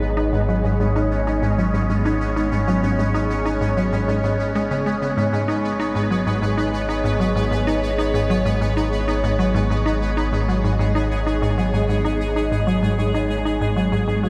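This hypnotic, mysterious stretch of ambient, sequencer-driven space music in G# minor opens at 96 BPM with a swirling, airy analog pad holding sustained G#m chords through phaser and chorus, a round sine sub bass on G#1, and a bright, tempo-synced gated texture pulsing alongside. At 0.2 seconds a juicy, squelchy blip pluck enters up front, its resonant filtered riff thickened by chorus and trailed by tape echo. The music sits in a vast, echoing cathedral reverb with a 5.3-second decay, and this passage, cut from a longer piece, stays on a single chord throughout.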